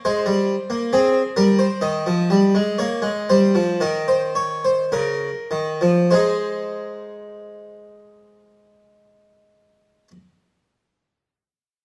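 Lively and elegant, this short excerpt from a longer classical work is a baroque-style two-part invention for solo harpsichord in Ab major, set in a straight 4/4. The tempo sits between 48 and 69 BPM, and the playing slows down over the first 6.1 seconds before a new section begins. The Italian-style harpsichord, with two sets of strings, sounds plucked and full, sitting up front and spanning from Db3 to Eb5 between 0.1 and 10.1 seconds. Its harmony moves from Ab through Ab over Eb and Eb5 before settling back on Ab at 6.1 seconds. A moderate stone room reverb gives the instrument a resonant, spacious ring.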